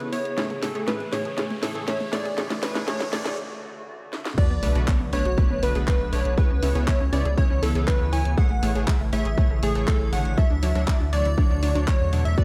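Lightly reverberant and high-pass filtered, this dreamy, driving progressive house excerpt runs at 120 BPM in straight 4/4, tuned to A4 = 435 Hz. It opens with a build-up. A catchy, detuned plucky unison lead carries the melody over a morphing, warbling wavetable pad with a vintage character. A bright analog pluck adds arpeggios in the background, and detuned supersaw chords hit in stabs. The house drum kit's cracking snare, handclaps, hi-hat and crash cymbal play a drum fill while filter sweeps run across the supersaw and the pad, and a riser enters at 0.6 seconds before a short break. At 4.4 seconds the drop lands with an impact: a punchy, up-front electronic kick joins, a round, deep analog bass follows a moment later, and a soft, airy second lead with vibrato slips in behind the main melody. The chords move through Amaj7, Dmaj7, Bm7 and C#m7 and back to Amaj7 and Dmaj7. Sidechain pumping on the pad, pluck, stabs, second lead and bass gives the track a breathing pulse, and dub echo trails both leads and the pluck.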